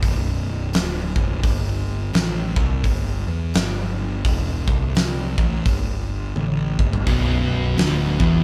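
Sludgy and ominous, this short stretch of stoner and doom metal, cut from a longer piece, rolls along with a swung, heavy feel. It opens with a fuzzed, overdriven electric bass up front, picked low and thick, alongside a big acoustic rock kit whose fat snare, punchy kick, toms and hi-hat sit in a dark, rolled-off room sound. The harmony shifts from Bm to a rootless Emadd11, and a drum fill at 6.4 seconds leads back to Bm at 7.1 seconds. At that point two distorted, picked fuzz guitars enter on a riff, one up front and one tucked behind, while a soft, flute-like tonewheel organ holds sustained chords in the background through a slow rotary speaker and chorus vibrato. The band sounds as if playing live in one room, with little reverb and a close, gritty presence.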